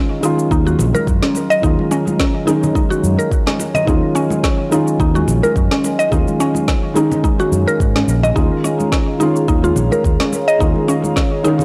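A lightly swung 4/4 groove at 107 BPM drives this warm, earthy organic downtempo piece in Eb minor: a woody electronic snare and shaker and bright, vintage congas tucked in the background enter at 0.2 s, followed at 0.5 s by a deep, up-front electronic kick and a growly, amped fretless bass with tube saturation and lush chorus. Over an Ebm7 that shifts to Bbm7 at 8.4 s, a felt-muted upright piano with audible action noise plays soft, intimate accompaniment, a round FM mallet-like pluck spins chorused arpeggios through analog delay, and a warbling, nostalgic tape-like pad holds dark sustained chords, with piano, pad and bass pumping to the sidechain. The gritty hardware recording adds transformer saturation and light reverb.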